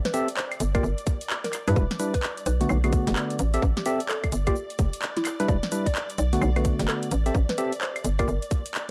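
A dry, gritty cassette-tape sound frames this short cut from a late-night, bouncy two-step garage track, swung on the sixteenths, where a punchy, hollow-knocking FM bass and a tight kick sit up front from about 0.6 and 0.7 seconds. Around them, a garage kit of woody snare, metallic hats, claves, handclaps and shaker drives the groove, while dark, percussive organ stabs with chorus and tape colour cut through the mix. Further back, a round, mallet-like synth pluck with chorus and phaser carries the melody over silky, vintage string-machine chords that pump with sidechain ducking, cycling through Am7, Gm7, Em7 and Bm7.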